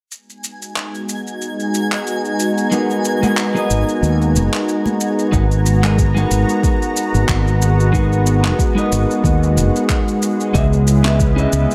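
A lush, detuned pad holds up front from the first moment, its thick sawtooth and square-wave chords opening slowly and sustaining under a chorus sheen while a filter sweep moves across it through the first 5.3 seconds. This wistful, smooth sunset chillout piece moves at 92 BPM in 4/4 with a swung sixteenth feel in G# minor, resting on a G#m9 chord before shifting to C#m9 at 10.5 seconds. An overdriven electronic shaker and handclaps run throughout, a twinkling granular texture adds a sparkling octave-up shimmer with its own reverb early on, and an electric guitar at the edge of break-up enters at 2.7 seconds with picked, compressed tones through a digital delay. Background congas sound close and dry for a brief stretch, while a dark, round fretless electric bass sits prominently underneath. A deep, layered electronic kick, overdriven and re-recorded in a small room, arrives at 5.3 seconds to give the second half more weight, all set in light reverb and digital ambience within this piece cut from a longer work.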